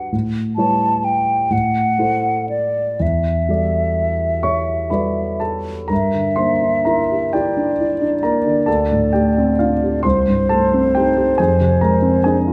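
Hazy and wistful, this short excerpt is a classical duo in an impressionist style for flute and grand piano, moving slowly at around 39-47 BPM in a rubato 6/8 that counts in dotted quarters. The concert flute carries the melody between C5 and A5, its pure, hollow tone sitting up front with vibrato and tongued notes. A dark, intimate grand piano supplies the accompaniment across a range from C2 to C#6, its smooth, vintage character touched by audible action noise. The harmony begins in E dorian with colours such as A9, Am6 and Em11, then shifts to G dorian at 5.9 seconds, passing through Gm6, D7sus4, Cm6 and Fm6. Both instruments play together from the start, the flute finishing at 12.4 seconds, just ahead of the piano. Close, detailed microphones capture the pair within a moderate recital hall reverb, with the instruments tuned to A4 = 442 Hz.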